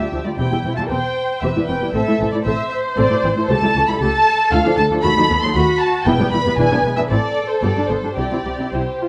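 A quick classical-period movement for string orchestra opens at once, its muted violins carrying a graceful, spirited melody between C5 and C6 over a second violin line, with the double basses joining at 0.1 seconds. Played con sordino, the bowed sections take on a veiled, dark colour, and the 116 BPM pulse in 3/4 moves with a rubato feel, tuned slightly low to A4 = 437 Hz. The lush first violins sit up front with vibrato, while the violas supply accompaniment from a more distant position, and the cellos, close yet in the background with light vibrato, share the bass with the soft-attacked, smooth-topped double basses. The harmony passes from C/E through Am, A7/C#, Dm and B7/D# to Em and E7, reaching Am again and moving through G5 before settling on C at 8.2 seconds. A moderate reverb from a large studio surrounds the ensemble, and this brief cut from a longer piece closes at 9.1 seconds as the violins and violas stop.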